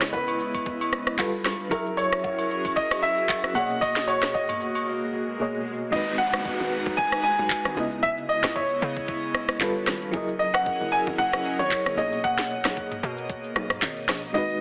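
Amapiano at 114 BPM in 4/4 with a light 16th-note swing, this late-night, deep passage is cut from a longer piece and moves through rich extended chords such as C#m9, G9, F#9 and Bmaj13. A present, up-front grand piano carries the melody through a digital delay, while a mellow FM electric piano with tremolo and an airy, breathy pad with slow attack, long release and chorus hold the harmony underneath. The produced afro-pop kit sits forward in the mix with a knocking kick, sharp snare, dark hats, handclaps, rim clicks, shaker and toms, joined for the opening stretch by acoustic woodblock and agogo bells. A background swell and downlifter lead into a brief break at 4.9 seconds, and at 5.9 seconds the drop arrives with a tight, punchy log drum bass. The whole mix is heavily compressed into an AM-radio character, lightly touched by reverb and digital ambience.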